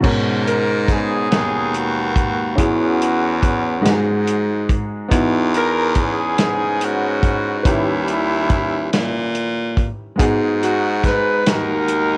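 Soulful and solemn, this slow gospel excerpt in G# minor moves in a straight 6/8 at 47 BPM, with a woody, vintage upright piano comping through rich chords like G#m11 and D#7b9b13 while an edgy baritone saxophone with light vibrato carries the bass line up front. A punchy soul drum kit with dark cymbals and a rolled-off top sits close and mid-forward, and a smooth-topped horn section enters at 0.5 seconds to carry the melody as an ensemble. Light reverb and a small room ambience surround it all, and the worn, warbling tone of old cassette tape adds a gentle pitch drift.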